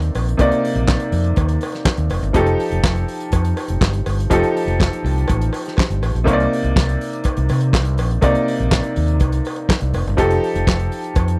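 Glamorous and driving, this short disco clip moves at 123 BPM in a straight 4/4, circling between Cm9 and F9 in C dorian. A fat-snared soul drum kit with tight kick, hi-hat and handclaps sits up front beside a warm, amped, overdriven fingered electric bass, while a clear, slightly worn grand piano fills in the chords. A metallic, vintage cowbell enters at 0.2 seconds in the background. The whole sounds like a dry, close 1970s studio recording with a touch of reverb.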